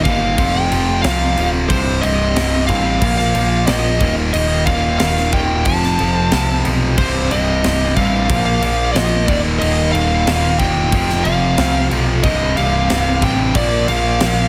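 Heavily compressed, radio-style sound sits inside a moderate concert-hall reverb, giving this heavy, menacing hard rock excerpt a dense, polished sheen. A smooth, overdriven lead guitar carries the melody high over the top, while a bright, cranked stack guitar drives the riff up front, shadowed by a dark, sludgy distorted guitar in the background. At 7.0 s a second sludgy guitar joins, double-tracked and very quiet, thickening the riff with a warm tone. Underneath, a deep, round and punchy picked electric bass anchors the low end, and a tight metal drum kit in a big, airy room adds bright crash cymbals, a high-tuned snare and a snug kick. The harmony cycles through power chords and minor chords such as Cm, Bb5, Eb5 and F5 in a straight 4/4 feel.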